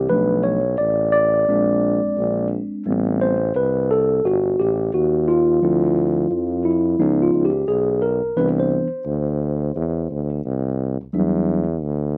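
A lightly reverberant, smoky jazz-hop excerpt with a swung, mellow hip hop feel. A clean tine electric piano, heard through its built-in speakers, sits up front, carrying jazzy seventh and ninth chords such as Am7, Dm9 and Cmaj9 before stopping at 11.6 seconds. Alongside it, a breathy tuba, also up front, plays the bass line with vibrato and scooped notes, present and jazz-inflected until the cut at 12.2 seconds.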